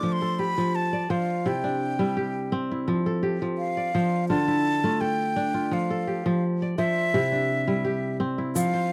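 A dry, close 1970s-style studio sound with light reverb frames this flowing, joyful West African traditional piece for strings at 84 BPM in F major, where a crisp, ringing kora plays fingerpicked arpeggios up front beneath a breathy, straight-toned concert flute melody with a soft attack, and a grainy, bright egg shaker sounds only briefly at 8.6 seconds in this short cut from a longer piece.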